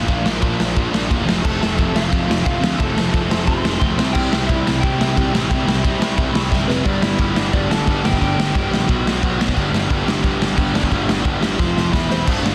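A crunchy, double-tracked overdriven guitar riff bursts in up front together with a slightly broken-up, compressed lead guitar melody carrying a digital delay and a growly, fuzz-soaked bass lurking in the background, and a raw garage drum kit joins almost at once. This short punk rock cut from a longer piece has a rebellious, rowdy mood and a straight, driving four-beat pulse. The drums sit up front in a bright stone room, pairing a tight kick and medium-tuned snare with crash and ride cymbals, their overall tone dark and smooth with a rolled-off top. A drum fill pushes the music into a new section at 6.9 seconds, where the chords move from a Bb, F and C opening toward G and punchy power chords. The lead guitar drops out at 8.9 seconds, leaving the riff, bass and drums to hammer on until a closing fill and a brief return of the lead at 12.1 seconds. Studio reverb surrounds a dense, heavily limited modern master.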